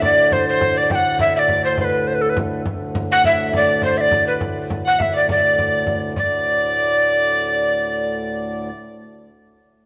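A festive, rustic medieval dance in 6/8, cut from a longer piece, where a breathy, chiffy tenor recorder carries the melody up front over an earthy fiddle second line and a reedy pedal harmonium drone, while a small, dry frame drum plays until 6.3 seconds, the whole heard within a wet echo chamber.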